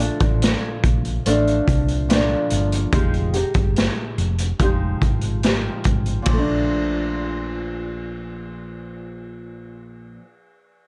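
A straight 4/4 pulse at 72 BPM carries this sunny, hazy bedroom-pop excerpt in Bb major, where an up-front, boxy fingerpicked nylon-string guitar with lush chorus and warbly pitch drift moves from Bbmaj7 to Fm9 over a round, punchy hollow-body electric bass, while a gritty, boomy-kicked garage drum kit with vintage 12-bit sampler crunch plays hi-hat, snare, kick and ride until 6.5 seconds, shortly after the second section begins back on Bbmaj7 in a dark production with light reverb.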